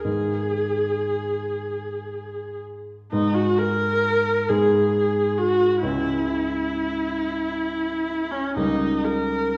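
A single bowed viola carries the elegiac, solemn melody of this romantic classical duo, its rich tone shaded with vibrato, soft attacks and expressive portamento, sitting up front yet with a distant quality. A natural-sounding baby grand piano accompanies underneath in a rubato 6/8, its short sustain keeping the harmony clear as it moves from G#m toward C#m7 at 5.8 seconds and D#7/C# at 8.6 seconds. A stone room's reverb and a dark, warm production give this brief fragment of a longer piece a hushed, sombre glow.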